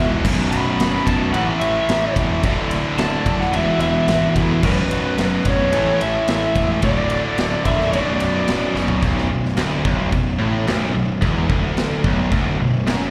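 Hard rock with an aggressive, heavy mood, where a lo-fi lead guitar through a small cranked amp sings a melody with slapback echo and analog delay over a barely audible gritty, overdriven organ, a stack of three overdriven and distorted riff guitars led by a bright, up-front tight part, a growly fuzz bass and a big acoustic kit with bright cymbals and a punchy kick, all heard as a live gig through the venue's PA, with the lead stopping at 8.7 seconds and a drum fill at 8.8 seconds leading into the closing section.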